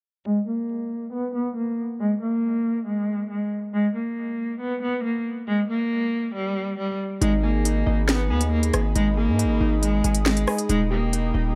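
A clear, bowed cello with vibrato carries an ominous, cold melody under a filter sweep from 0.3 seconds in this half-time drill excerpt at 138 BPM in G# harmonic minor, until at 7.2 seconds a heavy, saturated 808-style bass, a drill kit with a sharp snare, crisp hats, finger snaps and rim clicks, and glassy wave-folded keys arrive, joined by a warbling, nostalgic tape-like pad in the background over a dark, dry production moving from G#m to D#.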